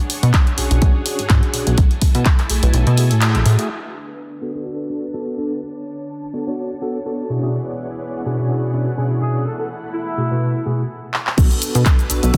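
A dense, heavily limited master with light reverb frames this sensual, funky excerpt of filtered disco house at 125 BPM in B dorian, where a lush, vintage string machine with ensemble chorus and 12-bit grit holds low-pass filtered chords throughout, pumping against the sidechain. A punchy electronic kick, tape-warm and up front, joins a punchy analog drum machine of handclaps, hi-hat, shaker and crash, a very quiet tambourine and a plucky sawtooth bass with ring-modulated filter pluck, and the kick drops out at 2.7 s before the groove thins to strings and a mellow tine electric piano with phaser. A tight horn section with light vibrato and dub echo plays a brief melody at 9.2 s, then after a stop a drum fill at 11.1 s brings the kick and bass back in on Bm7.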